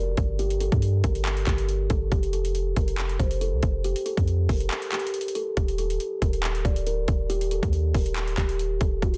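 A filtered kalimba carries the melody from the opening, its woody, fingertip-plucked tone sitting soft and close under a low-pass filter sweep that runs through the whole 9.2-second excerpt. This is an eerie, dark trap hip hop cut at 139 BPM in 4/4 with a half-time feel, moving through Gm, Fadd9 and Eb. A clean 808-style bass sounds from the start with a deep, boomy sine tone, fast attack and decaying notes. The trap drum kit enters at 0.2 seconds with a hard-clipped kick, metallic hi-hats and handclaps, overdriven and up front in the mix. A break arrives at 4.7 seconds before the groove returns at 5.6 seconds on the Eb chord, all in a dry room with a dense, heavily limited modern master.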